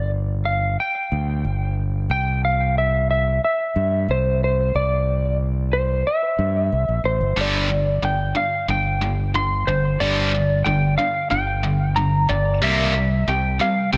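A straight 4/4 pulse at 91 BPM drives this brooding, melancholic post-rock excerpt in G minor, where a growling, punchy fingered bass with overdrive sits up front beneath a dark, slightly broken-up, compressed slide guitar melody trailed by analog delay, until a biting, bright, double-tracked guitar riff enters at 7.4 seconds to begin a build-up within a light reverb.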